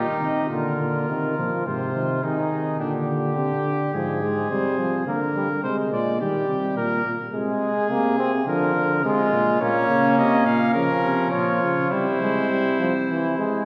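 A cornet melody, a trumpet second line, a bright, up-front trombone with light vibrato and a smooth top, and a distant, roomy bass trombone all sound together from the start of this contemplative, serious classical canzona excerpt for brass ensemble, where the warm cornet drops out at 5.1 seconds and returns at 9.6 seconds while a concert hall's reverberant bloom surrounds the imitative lines.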